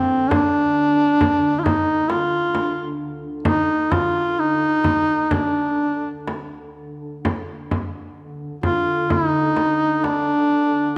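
The rhythm moves freely in a rubato 4/4 at roughly 60-69 BPM, giving this Caucasian folk lament a solemn, longing pace in D phrygian. A duduk carries the melody from the opening moment, sitting up front with a warm vibrato, scooped notes and a folk-style delivery that stays between C4 and F4. Beneath it, an evolving wavetable pad holds a D3 drone, its detuned sine and square tones morphing over a sub octave. Ensemble chorus and its own reverb soften the pad into a mellow bed set well below the lead. A deep, large frame drum with a vintage, band-limited character enters almost immediately and stops at 10.3 s, placed up front beside the duduk. A moderate concert hall with a 1.9 s decay surrounds the performance, and the music turns to a new section at 7.3 s before this cut from a longer piece ends.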